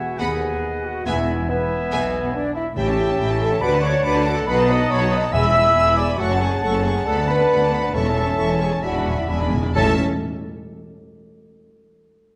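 A quick classical-period movement for symphony orchestra, this urgent, dramatic fragment of a longer piece moves with a flexible, rubato feel. A violin section carries the melody with vibrato and expressive portamento, set at a distance, while a second, lush violin section and a very quiet viola section sit beneath it, and rich cellos join smooth, even double basses on the bass line. The French horn section is the most prominent voice, holding warm, roomy sustained chords throughout. Flute, oboe and clarinet weave second lines in the background, the flute pure with a soft attack, the oboe clear and the clarinet bright, over a mellow, vintage-toned bassoon accompaniment. Timpani struck with hard mallets enter at 1.1 s and play an articulate fill from 8.8 s to 9.8 s that leads into a new section, all set in a wet recital hall reverb.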